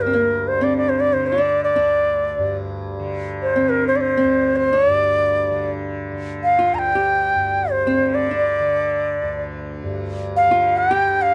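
Unfolding in free time, this Hindustani classical passage rests in raga Malkauns on D, tuned to A4 = 439 Hz, and carries an introspective, longing mood through its 11.3 seconds, cut from a longer piece. A bansuri leads the melody up front, its bamboo tone airy, reedy and bright, with a soft attack and gentle vibrato as it moves between Bb4 and Bb5. Beneath it, a miked and amplified archtop guitar plays a second line from Bb3 to G4, its picked electric sound clean, dark and hollow-bodied, sitting further back in the mix. Lowest of all, a tanpura holds a softly plucked drone from D2 to D3, its acoustic buzzing lending a shimmering, warm glow. All three parts sound throughout, framed by light reverb that gives the trio a gentle sense of space.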